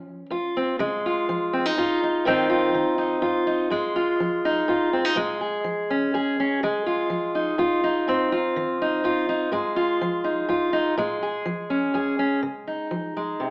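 A fingerpicked steel-string acoustic guitar carries this short folk piece alone, its full-bodied dreadnought tone sitting up front from 0.0 to 13.5 seconds. The mood is nostalgic yet uplifting, moving in 3/4 at 124 BPM with a straight feel in D-flat major, tuned slightly low to A4 = 439 Hz. The guitar ranges from F2 up to Ab4, cycling through chords such as Dbadd9, Ab6, Bbm7 and Fm7/Ab, and a new section arrives at 12.4 seconds on a return to Dbadd9. A moderate large-studio reverb with a 1.2-second tail gives the guitar some space, while the overall sound has the character of AM radio and the feel of musicians playing live in one room. Cut from a longer piece, the fragment feels like a brief, wistful glimpse of a larger song.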